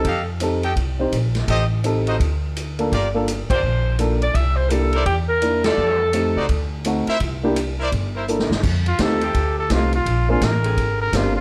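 A brief melodic phrase from a bright, vibrato-laden saxophone section opens this energetic big band swing excerpt over a dark baby grand piano, a woody pizzicato upright bass and a roomy, distant drum kit with a boomy kick, while tight trumpet stabs cut through; the saxophones return with the melody at 3.5 seconds, a drum fill leads into a punchy, clear trumpet solo at 8.9 seconds, and a warm saxophone section sustains chords beneath it, all under light reverb.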